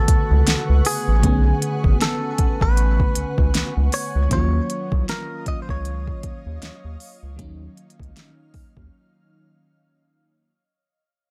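A clean, bright electric guitar carries the melody from the opening moment, its twangy picked tone echoed by digital delay, while a lush, warbling FM electric piano with a soft pad layer supplies chorused accompaniment and an ethereal, airy pad holds sustained chords high above. This brief excerpt of contemporary R&B moves at 78 BPM in 4/4 with a swung sixteenth-note feel, and its mood is longing and moody. Up front in the mix, a round, dark analog bass sits deep beneath the keys, joined by a smooth R&B drum kit of soft kick, fat snare and smooth hi-hats, overdriven and given a small-room character. The harmony shifts from Bm9 to D#m9 at 4.3 seconds, and the bass and drums drop out at 8.9 seconds, leaving the guitar, electric piano and pad in a short break. The whole passage sits under a fade-out, with the dry, close sound broken only by the pad's own reverb.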